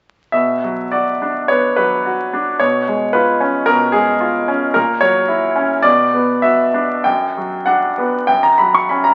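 Rubato pulls the 4/4 pulse between 95 and 114 BPM in this short fragment of a romantic character piece for solo piano, cut from a longer work. The mood is passionate and brooding, set in B minor, with a lone baby grand sounding from 0.3 to 9.1 s across a range from F#2 to C#6. The instrument is bright and polished, with short sustain, and it sits up front in the sound. The harmony moves from Bm through C#7/B and F#7/A#, returns to Bm and Bm/F#, and comes to rest on F# at 8.3 s. A moderate large-studio reverb surrounds the playing, while the very old 78 rpm transfer adds vinyl crackle and a dulled top end.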